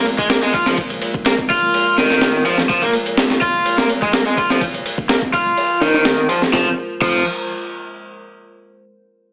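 Gritty and energetic, this breakbeat excerpt in F minor runs at 125 BPM, with an up-front, bright overdriven garage guitar riff and a thumpy, sampler-style break kit of kick, medium-tuned snare, crash and ride that sounds overdriven and re-recorded in a small room. Behind them sits a deep, moody analog pad of detuned square and sawtooth tones with chorus, phaser and sidechain pumping, carrying a filter sweep until 6.5 seconds, while a tape-tinged tambourine is barely audible. At 6.5 seconds a fat sawtooth bass enters on a low F, and the whole mix is squeezed into a heavily compressed, AM-radio sound with moderate studio reverb.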